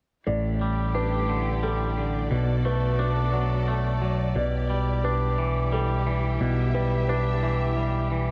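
A moderate large-studio reverb surrounds this brooding, melancholic rock excerpt at 59 BPM in 6/8, where a twangy, clean electric guitar plays arpeggios up front through analog delay, a round, amped picked electric bass holds the low end, a lush, bowed symphonic string section sustains chords with vibrato, and a soft felt-muted upright piano with audible action noise and its own analog delay arpeggiates in the background until 7.8 s, all over A7sus4, Bm7 and Em7/B.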